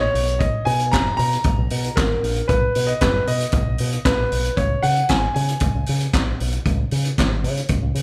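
Glamorous and sultry, this short disco excerpt opens with a clear, up-front concert grand piano carrying the melody with long sustain and deep low end until 6.1 seconds, as a fingered electric bass runs through an envelope filter with a warm, direct tone. A vintage acoustic drum kit joins at 0.2 seconds with handclaps, hi-hat, a punchy kick and a high-tuned snare, its rolled-off top sitting mid-forward and close. The band plays together in one room under light reverb, moving from Bmaj7 to C#5 over a straight groove.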